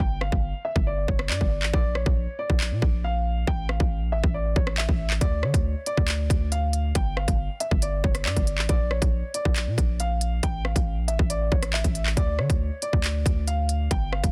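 This drill hip hop excerpt, cut from a longer piece, moves with an ominous, tense half-time feel from start to finish. A dark, boxy grand piano carries the melody high in its range, its worn, mellow tone trailed by delay and sitting lower in the mix than the rhythm parts. Underneath, a heavy 808-style bass built from a sine with a noise layer hits with a fast attack and then decays, sitting punchy and up front. The electronic drill kit is equally forward, pairing a hard-clipped kick with crisp hi-hats, handclaps and rim clicks, all carrying a tape-warm edge. A break runs through the opening 5.2 seconds, and a short chord cycle of G5, Bb, A5 and Dm repeats over the passage, captured dry with little reverb in a dense, heavily limited modern master.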